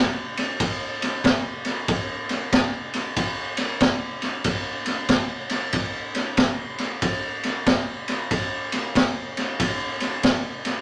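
A swung 4/4 groove at 93 BPM drives this gritty, rollicking blues cut from a longer piece, where a raw garage drum kit enters at 0.4 s and sits up front with a punchy kick, a high-tuned snare and a ride cymbal, its saturated, mid-forward sound and rolled-off top carried by a moderate club reverb.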